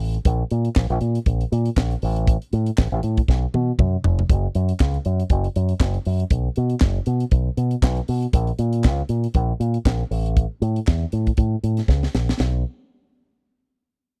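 Disco groove at 119 BPM in 4/4, driving and danceable, with a light swing on the sixteenths. A fingered electric bass run through an envelope filter sits up front with a punchy, direct tone, playing from the start alongside a tight funk drum kit of kick, high-tuned snare, hi-hat, handclaps and toms that sounds airy and polished. Drum fills arrive at 3.3 and 11.9 seconds, and the dry, close 1970s-style studio sound keeps both parts crisp until they stop around 12.6 seconds in this excerpt from a longer piece.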